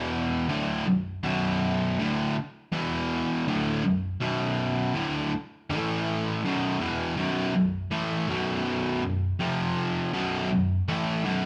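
A straight, steady 4/4 pulse drives this gritty, brooding rock fragment, carried entirely by a cranked stack guitar: bright, overdriven, picked and double-tracked, sitting up front as it moves between E5, Bm and A5 chords in a low register. At 7.2 seconds the passage shifts into a new section that leans on F5 and B5 before the cut at 11.5 seconds. A moderate stone-room reverb gives the live, one-room performance a hard-walled, echoing sense of space.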